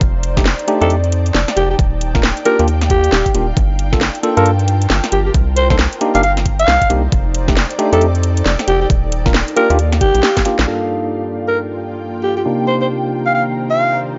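Skippy and late-night, this excerpt is two-step UK garage at 135 BPM in G minor, its sixteenths swung at 62% over chords moving through F13, Ebmaj9, Gm9 and Cm9. A knocking, tape-warm electronic kick and an up-front, layered garage kit with a cracking snare and metallic hats, the kit's snare, hats and cymbals filtered dark, drive the groove, while a rubbery, hollow square-wave bass bounces low beneath them until 10.7 seconds. Behind them an ethereal, airy pad of detuned saws and triangles with a sub octave drifts in softly, thickened by ensemble chorus and its own reverb and moving with sidechain pumping. A clean tine electric piano plays stabs through a low-pass filter and tape echo from 0.4 seconds, and in the closing stretch a filter sweep moves across it. Leading from 0.8 seconds, a breathy, raspy alto saxophone solo in jazz style growls with vibrato and a smooth top, and a drum fill and band accent mark the turn into the final bars. 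The whole sound is dry and gritty, with a dulled, hardware-like top end.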